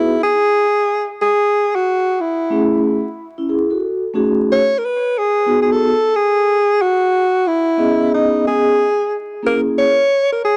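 From the first moment, a breathy alto saxophone and a soft-mallet vibraphone open together in this mellow, nocturnal hip hop excerpt, moving at 91 BPM in 4/4 with a lazy 16th-note swing. The saxophone carries the melody in a close-miked, jazz-style solo voice, its tone warm and shaded with vibrato and a trail of analog delay. Beneath it, the vibraphone supplies accompaniment with a metallic, ringing sound, airy and warm, with a fast motor vibrato. Both parts sit up front over a harmony that drifts from B6 through Amaj7 and Amaj13, returns to B6, and moves through C#5 before settling toward A#m7b5. The dry, gritty hardware sound, touched with light reverb and vinyl crackle, gives the fragment a dusty late-night character. The vibraphone stops at 9.9 seconds, leaving the saxophone to close the excerpt alone at 10.6 seconds.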